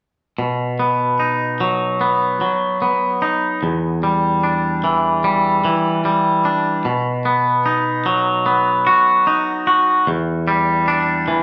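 Rock at a slow 74 BPM in a straight 4/4, carrying a cinematic, brooding mood in this short cut from a longer piece. A twangy, clean electric guitar plays fingered arpeggios from 0.4 to 11.4 seconds, moving between B and Em7, sitting up front with a compressed, warm tone and a slapback echo. A wet large-studio reverb gives the lone part a spacious, shadowy air.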